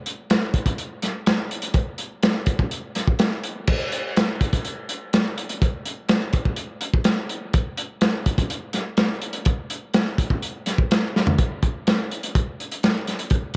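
Rock drum excerpt at 124 BPM in a straight 4/4, with a hypnotic, mysterious mood. A crunchy breakbeat kit carries the whole piece from 0.1 seconds, its crash cymbal, hi-hat, kick, snare and toms sounding acoustic and up front, as if in a small room. The tone is dark and gritty, saturated with a rolled-off top, pairing a tight kick and medium-tuned snare with dusky cymbals. A moderate spring reverb with a 2.7-second tail hangs around the kit. A drum fill at 11.1 seconds leads into a new section at 11.4 seconds, which runs until the kit stops at 13.6 seconds.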